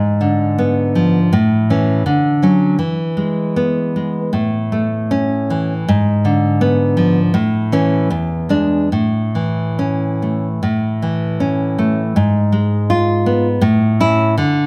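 A moderate recital-hall reverb, around 1.5 seconds, surrounds a solo nylon-string guitar placed up front, its fresh strings giving a full-bodied, deep classical tone with audible finger squeak. This short romantic passage for classical guitar, cut from a longer piece, moves in a rubato 2/4 between roughly 68 and 84 BPM in A major, tuned to A4 = 438 Hz. The fingerpicked part spans E2 to E#4 and carries a tender, warm mood throughout. Its harmony circles around A, with a G#dim7 colouring the opening and returning at 5.9 s, alongside Dmaj7, E and E7 before settling home. The opening phrase restarts at 10.6 s, where a G#m6 adds a bittersweet shade before the guitar resolves to A at 13.6 s.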